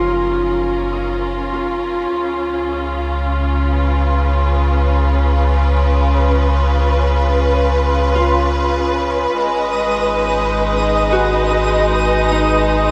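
A lush, bowed string section fades in with smooth, vibrato-rich chords over a round, deep sub bass, while a ringing, fingerpicked Celtic harp plays arpeggios through tape echo and shimmer reverb and fades out as the harmony moves from F#maj7 to C#7 and then G#m7; a twinkling granular texture with an octave-up sparkle enters at 9.6 seconds, all of it set in a huge, wet ambient room in this serene, warm cut from a longer ambient piece in 3/4.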